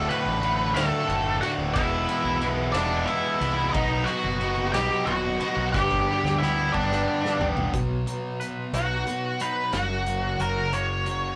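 This rough rehearsal-room recording wraps a moderate booth ambience around a bittersweet, anthemic slice of quiet-loud alternative rock, cut from a longer piece and moving in a straight 6/8 at 60 BPM. A dark, octave-fuzzed lead guitar carries the melody up front throughout, over a bright, overdriven stack guitar riffing up front until 7.7 seconds and a thick fuzz guitar grinding in the background. A growly, fuzzed fingered bass anchors the low end, while a loose indie kit with a punchy kick, medium-tuned snare, dark cymbals and a pumping, rolled-off room sound plays hi-hat, kick, snare, ride and toms, rolling through a fill before the change. At 7.7 seconds the feel drops to half time as the lead guitar takes a solo and a clean, compressed, twangy guitar enters with tremolo-tinged fingered arpeggios. The chords move from D through E and B to G, then settle on B and F#.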